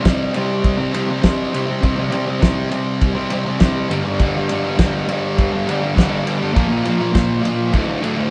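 A fuzz guitar opens at once with a bright, distorted, double-tracked riff sitting up front, moving through C5, G5, Bb5 and D5 power-chord shapes at 101 BPM in a straight 4/4 garage rock feel that is raw and rowdy. A cloth-damped, thuddy acoustic drum kit joins at 0.1 s with a tight kick, fat snare and dark ride cymbal, its rolled-off top lending a muffled small-room character. The band sounds captured live in one room with moderate studio reverb, and the passage is cut from a longer piece.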